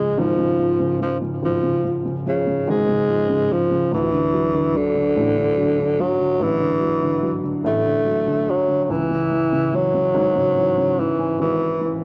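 Dramatic and aching, this short pop fragment moves slowly at 48 BPM in 6/8, tuned to A4 = 438 Hz, over chords shifting from C# to Dadd9 at 3.9 seconds and C#m at 8.9 seconds. A growling tenor saxophone carries the melody up front in a jazz style, breathy and raspy with subtone, vibrato and scooped notes, while a felt-muted upright piano accompanies in soft, intimate tones with short sustain. Both instruments carry a cassette-tape colour, set in light reverb and small room ambience that give it the feel of a home recording.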